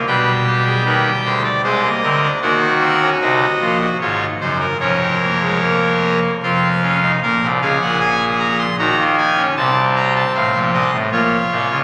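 Set in a steady 3/4 at 76 BPM with a straight feel, this short piece, cut from a longer work, is a serious, solemn baroque-style four-part fugue for pipe organ in Bb minor, tuned to A4 = 438 Hz. The organ plays solo throughout its 11.8 seconds, sounding its trumpet stop with a brassy, bright baroque voicing placed up front, spanning from a deep F1 to a high C6. The harmony moves from G/B through Ab/C and Cm7b5 to Bbm/F and a bare F5, then a new section at 7.2 seconds settles on Bbm before passing through Ebm11 and F7/C to return home on Bbm at 11.1 seconds. A wet cathedral reverb with a 4.9-second decay surrounds the instrument in a drenched, lingering space. The recording was captured on a phone in the room, with added club reverb and compression.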